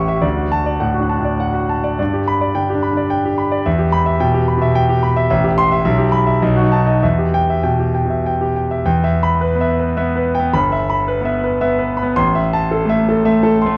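Worn old cassette tape colours this recording with a warbling pitch drift, while a moderate recital hall reverb surrounds the playing. This is a virtuoso classical piano study, heroic and sparkling in mood, moving in a flexible, rubato triple metre. A clear concert grand piano plays solo from start to finish, sitting up front with a deep bass and a smooth, vintage tone across a broad span from low to high register. The harmony starts on D and G before settling into a minor-key passage that circles through E minor, A minor seventh and B7. Around 8.9 seconds the music turns to a new passage that closes on A minor, and the clip ends at 13.8 seconds as a fragment of a longer piece.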